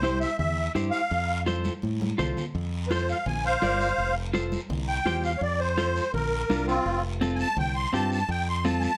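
Cumbia in a joyful, danceable mood, this short cut from a longer piece moves in a straight four with an easy pull toward the dance floor. A reedy musette accordion carries the melody, its shimmering wet tuning captured close and dry, and from 2.5 s it takes a full solo over a simple cycle of F, B♭ and Csus4 chords. Beneath it, a clean, picked electric guitar with a compressed edge plays accompaniment, while a bright fingered electric bass holds the low end directly; the accordion, guitar and bass all sit up front. High-tuned, ringing congas played with soft hands stay in the background, and a raspy, band-limited guiro adds a vintage scrape. A short fill at 1.7 s leads into the solo, and a moderate large-studio reverb gives the whole band a sense of space.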